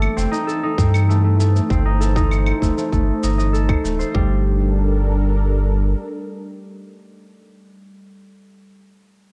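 A straight 4/4 pulse at 98 BPM comes from muffled, pitched-down claves and shaker and a tight electronic kick that enters at 0.8 seconds, opening this short, autumnal and wistful folktronica excerpt in G minor. A deep, round sine sub bass sits up front beneath ringing, fingerpicked concert harp arpeggios treated with a low-pass filter and digital delay, while a smooth, detuned sawtooth pad holds mellow sustained chords with chorus. The dark, dry production moves from A diminished to G minor at 4.1 seconds as the drums fall away, and after the bass stops at 5.9 seconds the harp and pad carry the final moments.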